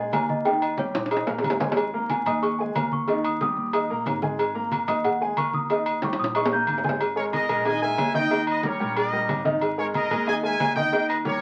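A bell-like celesta leads this driving, passionate salsa fragment over a woody upright piano, thumpy pizzicato upright bass, low-tuned congas, tight cowbell and bongos, and ringing timbales and agogo bells with drum fills, before a punchy trumpet section takes the melody at 7.2 seconds, all wrapped in the crackle of a very old 78 rpm record.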